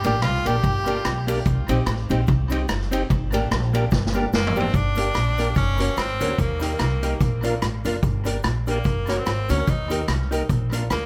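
A bouncy, cheerful ska groove in 4/4 with a light swing on the eighths rides on an up-front, boomy street-band drum kit with tape echo and a thumpy, woody pizzicato upright bass. Around them sit a clean, compressed hollow-body archtop guitar, a very quiet fingered electric guitar riff, a grainy cabasa and a round tonewheel organ, whose percussive stabs carry chorus vibrato and a fast rotary speaker. An edgy tenor saxophone with tape echo leads with forceful, scooped notes and vibrato, dropping out after 1.3 seconds and returning at 4.3 seconds as a drum fill carries the music into its second section, all in a light reverb, cut from a longer piece.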